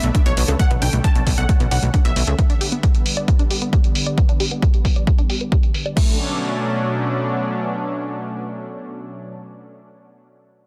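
Uplifting trance at 134 BPM in B minor, this short cut from a longer piece carries an emotional, bittersweet mood over a straight 4/4 pulse, moving from Bm7 to G and back to Bm7 at 6.0 seconds. An analog drum machine opens the cut, its crash cymbal and hi-hat darkened by low-pass filtering, and a punchy, overdriven electronic kick joins it up front from 0.1 seconds. Beneath them, a plucky, funky analog bass with a sawtooth and pulse-wave edge adds a short up-front figure, while a bright, detuned unison pluck carries the melody through a phaser and digital delay in the opening seconds. A tight, driving sequenced synth runs arpeggios in the background with chorus, phaser and delay, its filter sweeping across the first 6.0 seconds. Holding it all together, a thick, warbling vintage pad sustains chords through chorus with a slow attack and long release, also swept by a filter, and the sidechain pumping on the pitched parts gives the dense, heavily limited master its breathing motion.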